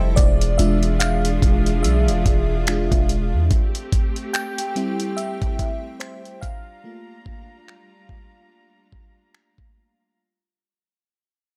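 A lush FM electric piano with a soft pad layer opens this dreamy, tender contemporary R&B fragment at 72 BPM, joined at once by a distant, bowed studio string section holding sustained chords and a deep, sine-toned 808-style bass placed up front. The electric piano carries the solo throughout, its detuned, triangle-edged tone shimmering with chorus and phaser over a faint noise layer. At 0.2 seconds a gritty, compressed sampler-style drum kit enters with finger snaps, hi-hat and a thumpy kick, its 16th notes swung for a relaxed, unhurried sway. The bass rings long and mellow before stopping at 3.5 seconds, while the focused strings, touched with vibrato, carry the harmony through E7b9, Am7 and Gm7. The sound is dry, and the whole passage, which is cut from a longer piece, fades out gradually across its length.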